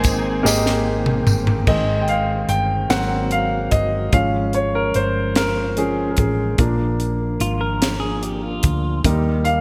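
This slow gospel excerpt moves at 49 BPM in a straight 6/8, sounding uplifting and reverent in Ab major. A smooth, bowed string section voices the melody only in the opening half second, alongside a jingly tambourine that plays until 1.7 seconds, while a crisp fusion drum kit with a high-tuned snare, punchy kick and gated reverb plays a fill from 0.5 to 1.7 seconds. From 1.7 seconds the up-front grand piano, vintage and smooth, takes a solo over chords moving from Ab through Ab7 and Db to Bb and Eb. Underneath, a round, dark hollow-body electric bass holds the low end, and a mellow, flute-like tonewheel organ sits in the background with sustained chords, its slow rotary speaker and chorus vibrato adding motion. A clean, picked electric guitar with spring reverb adds a brief second line between 7.4 and 9.0 seconds. The whole is bathed in a lush hall reverb with bright 1980s-style digital polish.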